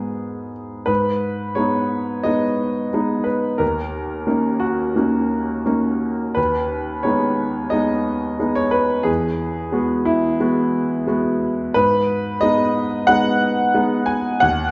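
A wet recital-hall reverb, with a decay of 1.7 seconds, surrounds a single grand piano that sits up front, its tone worn and a little boxy. This is a melancholic, reflective piece of neoclassical minimalist piano in G# minor, taken from a longer work and played alone for the full 14.7 seconds. The tempo is around 88 BPM in 4/4, but the feel is rubato, so the pulse breathes freely rather than holding to a strict beat. The harmony moves from G#m through D#m7 and G#m/D#, settles on an Eadd9 at 9.1 seconds, and returns to G#m. The playing spans from D#2 up to G#5, and the instrument is tuned slightly below standard pitch, with A4 at 438 Hz.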